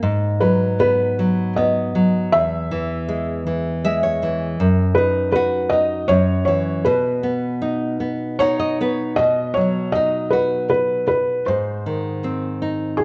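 A gentle, sleepy children's lullaby in B major, drifting at 79 BPM in a rubato 3/4, where a full-bodied, fingerpicked nylon-string guitar sets the accompaniment before a soft, felt-muted upright piano enters at 0.4 s with an intimate, mellow melody, its audible action noise and short sustain sitting up front, while the guitar adds fills around 3.5 s and 8.0 s, all framed by a moderate recital hall reverb in this section cut from a longer piece.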